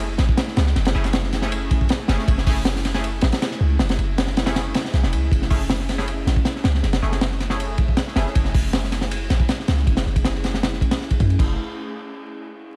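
A deep, boomy 808-style bass with a noise layer opens this dark, atmospheric drum and bass and jungle excerpt at 158 BPM in F# minor, joined at 0.2 s by an up-front, gritty, saturated breakbeat kit with a punchy kick, high-tuned snare and dark cymbals, while nasal, band-passed sawtooth chord stabs with a filter sweep, chorus and dub echo sit further back from 0.9 s over an F#m7 chord and vinyl crackle, the kick briefly dropping out at 4.6 s.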